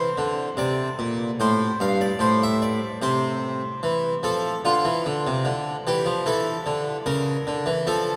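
Drenched in a long cathedral reverb, this 8.2-second cut from a longer baroque-style suite movement in F major features a solo French-style harpsichord, full and plucked, with two sets of strings sounding up front, as it moves with grave, introspective rubato at 74 BPM in 4/4 through C7, F, D minor and A chords.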